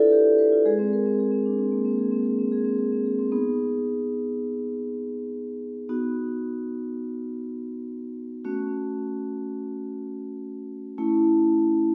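Warm and flowing, this fragment of a contemporary classical piece for solo vibraphone moves at about 117 BPM in 5/4, though the rubato phrasing keeps the pulse supple. The vibraphone, played with medium mallets and its motor off, carries everything alone from 0.0 to 11.9 seconds, its metallic, ringing tone spanning Ab3 to Fb5. The harmony opens on Dm6 and Abadd9 before a new passage begins at 3.3 seconds with B6. From there it moves through D#m/B, A6 and C#m/A. A recital hall reverb with a 1.5 second decay surrounds the instrument, and it sounds as if heard from further back in the room.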